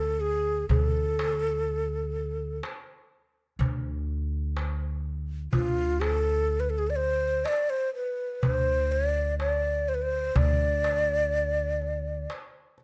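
Hypnotic and longing, this short cut from a longer Arabic maqam ensemble piece moves at 124 BPM in a straight 10/8, set in D maqam nikriz. A breathy, mellow end-blown ney carries the melody between F4 and Eb5 with vibrato and a soft attack, sitting up front alongside a woody, thumpy pizzicato upright bass on gut strings that holds D2. A crisp metal-shell darbuka played with hard hands joins at 0.7 seconds, sounding distant in a large room, while light reverb and close, detailed microphones frame the whole ensemble.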